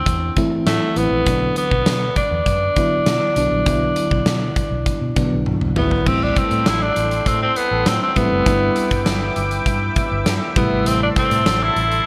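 Moody and urgent, this 1980s-style pop passage moves at 100 BPM in a straight 4/4, cut from a longer piece. A raspy, gritty tenor saxophone carries the melody up front, its punchy tone trailed by delay. Beneath it, a mellow FM electric piano with fast-attack, decaying notes and a faint noise layer supplies the accompaniment. A dark, foam-muted fingered bass gives round, punchy low notes, while a big rock drum kit with a fat snare, punchy kick, hi-hat, crash and toms booms through gated reverb. A drum fill at 5.5 seconds leads into a second passage at 6.1 seconds, where a lush, detuned unison pad enters with slow-attack, chorused chords that warble over the shift from Am7 to Em7/G. The bright digital production sits in a moderate plate reverb that lends the whole arrangement a glossy sheen.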